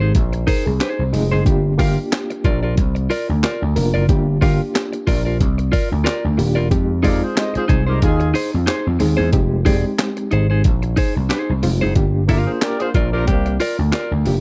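A punchy, up-front vintage slap bass anchors this sly, cool funk excerpt at 91 BPM in F dorian, riding a gritty, pitched-up breakbeat sampler-style kit with a thumpy kick, handclaps, hi-hat and a medium-tuned snare, all lightly swung on the 16ths. A reedy, worn and slightly out-of-tune electric piano with fast tremolo plays stabs and opens with a brief fill, while a clean, picked electric guitar adds compressed accompaniment over chords moving between Fm7 and Gm7. A mellow, distant horn section with tube saturation slips in a tight second line at 7.0 seconds and again at 12.3 seconds, all set in a dark, digital ambience.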